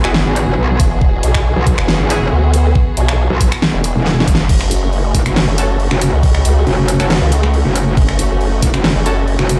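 Heavy wobble dubstep at 138 BPM in a half-time feel and F# minor, chaotic and heavy, where two up-front wobble basses, one vowel-like and detuned with chorus and overdrive, the other metallic, aggressive and distorted, grind beneath dark, veiled con sordino strings pumping with sidechain, bold sawtooth orchestra-hit stabs with delay sitting in the background until 2.3 seconds and again from 5.6, an overdriven drum kit with a huge snare, bright hats, finger snaps and crash, and a knocking electronic kick from 0.8 seconds, with a drum fill and band accent just before the chords move from Eadd9 to F#m at 4.5 seconds, all heard on a big sound system in a bare stone room.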